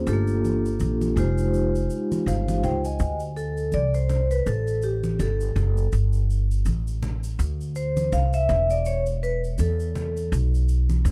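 A close-miked, ringing vibraphone played with medium mallets and a slow motor vibrato sits up front in this mellow, nocturnal jazz-hop piece, moving from Gm9 and Fm9 into a solo at 3.0 s before it stops at 10.3 s. Beneath it, a woody, thumpy pizzicato upright bass on steel strings holds the low end at a relaxed 82 BPM in 4/4 with a gentle sixteenth-note swing, while a tube shaker and congas played with hard hands sound distant, as if in a large room. The dark production and light reverb give this fragment of a longer track a late-night hush.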